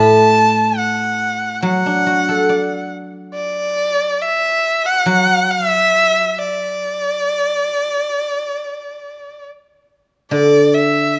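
A rich, expressive erhu sings a graceful pastoral melody with vibrato and portamento, up front alongside a ringing, silvery guzheng played with fingerpicks, also up front, in this fragment of a slow Chinese traditional chamber piece at 69 BPM in D gong mode, set in a moderate recital-hall reverb.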